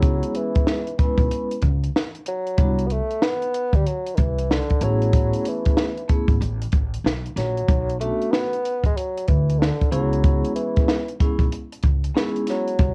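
Jazz-hop with a cool, smoky mood, this short cut from a longer piece rides a swung 4/4 groove that feels like a late-night home recording on cassette. A dark bassoon carries the melody up front in a classical style, its vibrato and smooth top giving the solo line a brooding, velvety presence. Beneath it, a vibraphone played with soft mallets rings out a mellow, airy accompaniment with a slow motor vibrato, colored by cassette tape grit and plate reverb, before falling away at 12.6 seconds. A pizzicato upright bass with steel strings adds a woody low end. A compact cocktail drum kit sits prominently in a small room, with a punchy kick, a high-tuned snare and hi-hat, its sound kept shadowy and sleek by its own cassette tape treatment. The harmony drifts from C#m7 through Cmaj9#11, Amaj7 and Bm9 before returning to C#m7, all bathed in light reverb.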